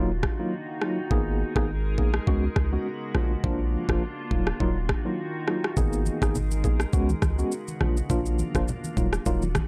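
Over a lightly swung afrobeats groove from an electronic drum kit with a knocking kick, rim click and shaker, a worn, slightly out-of-tune tine electric piano with tremolo sits up front beside a deep, punchy sine sub bass and a glassy, ethereal FM pad pumping under chorus and its own reverb, while a barely audible downlifter passes early and low-tuned, thick-skinned congas slip in at 5.8 s, all captured with a gritty, dry hardware feel in this mellow, hypnotic excerpt from a longer piece.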